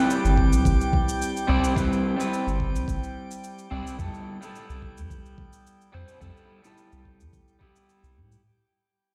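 Wistful and warm, this sunset chillout fragment moves at 108 BPM in a straight 4/4, cut from a longer piece and fading out across its full 8.4 seconds. An up-front electric guitar sits at the edge of break-up, picked and twangy, carrying the accompaniment through a delay from G3 to D5 while the harmony moves from Cmaj7 to a rootless Fmaj9#11 at 4.0 seconds. Beneath it, a deep, round sine sub bass with a fast attack enters at 0.2 seconds and holds sustained notes between G1 and A2. A calm, glassy texture of drifting overtones floats higher, its slow attack and long release softened by chorus and its own reverb. An electronic shaker and a knocking, tape-tinged electronic kick drum supply the pulse, the kick arriving at 0.4 seconds and dropping out at 7.7 seconds. The whole mix sits in a lush hall reverb and carries the stony ring of a bare room heard through a big sound system.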